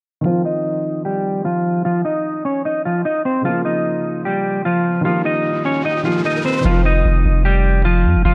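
A felt-muted upright piano opens this brooding, menacing hip hop fragment at 0.2 s, its soft, intimate accompaniment filtered low beneath an up-front clean electric guitar melody, fingered and warm, moving over F5, Bbm and Ebadd9 at 150 BPM in a half-time feel. A filter sweep runs through the opening stretch, and an electronic riser enters at 4.8 s. At 6.7 s a deep, sine-like 808-style bass arrives up front with a fast attack and long decay, grounding the dark production and its light reverb before the cut.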